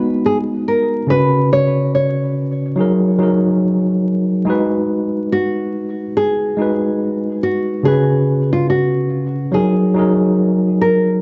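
Hazy and nostalgic, this short clip from a longer hip hop piece moves with a relaxed, swung sixteenth-note feel. A worn, slightly out-of-tune tine electric piano sits up front as the accompaniment, lightly overdriven and colored by cassette tape and a low-pass filter, as if heard through built-in speakers. Over it, a fingerpicked classical nylon-string guitar carries the melody, also up front, with an acoustic, warm tone, audible finger squeak and its own low-pass filtering. Both parts play throughout the 11.2 seconds, cycling through G#m7, C#7sus4 and F#69. A moderate plate reverb and filtered vinyl crackle wrap the whole clip in a dusty, faded haze.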